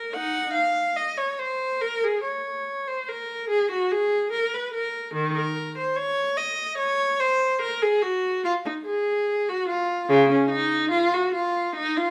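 A single bowed viola is heard from the first moment, playing a flowing, introspective line in a baroque-style suite movement cut from a longer piece. Its tone is rich and expressive, shaped by vibrato and portamento, and it sits up front yet carries a distant quality. The music moves at around 73 BPM in 4/4 with a rubato feel, in B-flat minor, ranging from the D-flat below middle C to G-flat high in the instrument's register. The lone player is heard throughout the 12.1 seconds, within a stone room whose moderate reverb lingers for about 1.2 seconds.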